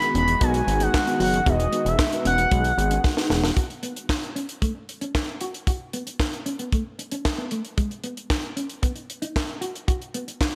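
A fat, detuned sawtooth bass sits up front in this slick, late-night slice of early-eighties boogie funk, its filter sweep and fast, decaying attack giving each low note real weight. Above it, a smooth, expressive synth lead blends sawtooth and triangle tones with a soft attack, vibrato, chorus and tape echo. A mellow, brassy synth section with a round, full-bodied tone and a lush, slow-blooming unison pad sit further back, both wrapped in chorus. A tight funk kit of kick, high-tuned snare, hi-hat and handclaps drives the groove with a dry acoustic snap and gated reverb, while a clean, fingered electric guitar plays a compressed, dark riff with subtle chorus. After a drum fill at 3.0 seconds, the bass and synths fall away by 3.5 seconds, leaving the drums and guitar riff to carry the rest of the excerpt over a light small-room ambience.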